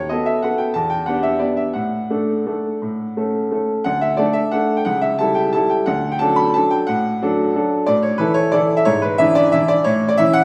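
Graceful and sparkling, this short cut from a longer classical piano waltz in 3/4 moves with a free rubato feel, its lone bright upright piano ringing brilliant and woody across a broad range while a wet recital-hall reverb places the listener further back in the room, with the opening phrase giving way to a new section at 3.9 seconds.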